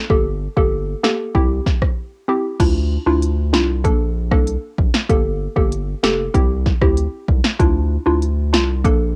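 Dancehall at 96 BPM in D minor, this short cut from a longer piece has a sultry, bouncy mood and a straight 4/4 feel. A hollow, warbling square-wave pluck carries the accompaniment with a vintage, detuned character, its chorus and sidechain pumping giving the chords a breathing motion as they move from Gmadd9 and C through Dmadd9 and Bbmaj7. Underneath, a round analog bass sits up front with a deep, dark, sustained tone. The deep house drum kit is electronic and layered, with a punchy kick and snare, smooth hi-hats, rim clicks and crash cymbal, all treated with a cassette-tape effect and re-recorded in a small room. A brief break at 2.0 seconds leads into the second section at 2.6 seconds, and the whole recording has the light reverb of a home recording on cassette.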